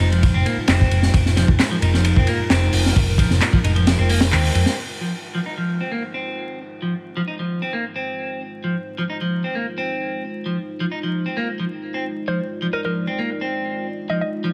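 A straight 4/4 breakbeat groove at 132 BPM opens this raw, swaggering breaks excerpt in F dorian, with a crunchy, saturated drum kit, high-tuned snare and punchy kick driving alongside dry analog handclaps and a round, hollow-body picked bass until a band accent at 4.3 seconds, after which the rhythm section drops out by 4.8 seconds. Throughout, a twangy, clean guitar riff sits up front through a low-pass filter and digital delay over a moody, detuned analog pad on Fm7, its sustained chords pumping under sidechain with phaser, chorus and 12-bit sampler grit. At 12.3 seconds a woody, mallet-like FM pluck adds a brief melody colored by AM radio tone and delay, all wrapped in vinyl crackle and a dry sound.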